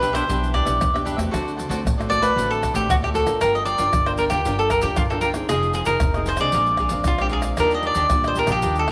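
Lively and joyful, this short samba-and-choro excerpt sets an up-front, crisp picked cavaquinho melody over a second picked cavaquinho's accompaniment, a small fingerpicked nylon-string guitar, a woody, growly pizzicato upright bass, and close, dry, soft-handed tube shaker, pandeiro, tamborim and deep surdo, all in a moderate echo-chamber reverb, with the music settling into G minor at 3.4 s.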